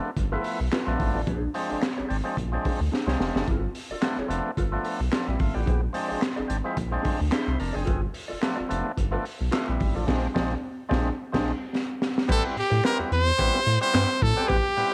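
A brilliant, forceful trumpet bursts in up front at 12.3 seconds for a closing melody over a faint metallic cowbell, capping a playful, strutting funk groove in G mixolydian at 109 BPM with a 16th-note swing. Before that, a gritty, overdriven tonewheel organ with key click stabs between G9 and Bb9 chords, a mellow guitar drenched in lush chorus sits in the background, a round, deep analog bass holds the bottom, and a crunchy breakbeat kit with a punchy kick and high-tuned snare drives from the front. Drum fills, a band accent and an organ fill lead into the shift to Am9, all in a dry, close sound cut from a longer piece.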